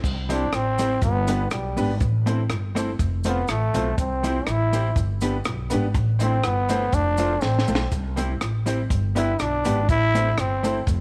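Ska at 122 BPM in C major, upbeat and bouncy, cut from a longer piece and built on a repeating C, G, Am, F progression. A raspy, growling trombone takes the solo up front with vibrato, carried by a woody pizzicato upright bass and a compact cocktail drum kit with a punchy kick and high-tuned snare that plays a short fill at 7.4 seconds. A clean, compressed electric guitar with tape echo sits in the background beside a grainy cabasa, while an upright piano adds clear, vintage stabs with long sustain, all in a light studio reverb.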